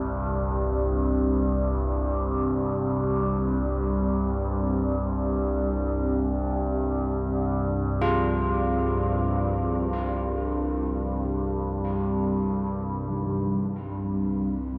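An up-front, wave-folded drone with moving overtones, chorus and phaser opens this desolate ambient excerpt in free time, joined from the start by a deep, detuned analog pad, bright carillon bells tracing arpeggios through tape echo, and a barely audible metallic singing bowl, the whole excerpt suspended in huge, dark reverb before the harmony settles onto C minor at 13.1 seconds.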